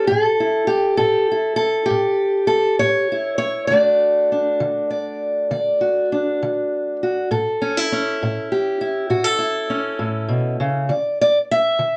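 Swaggering and rollicking, this excerpt of acoustic country blues rolls along at 67 BPM in a straight 12/8 feel, centred on A mixolydian. A lone fingerpicked steel-string parlour guitar carries everything from 0.0 to 12.0 s, its dark, boxy tone sitting up front as it moves from A to D and back, landing on a D5 at 10.9 s. A short, wet studio reverb surrounds it, and the top end is rolled off for a dusky finish.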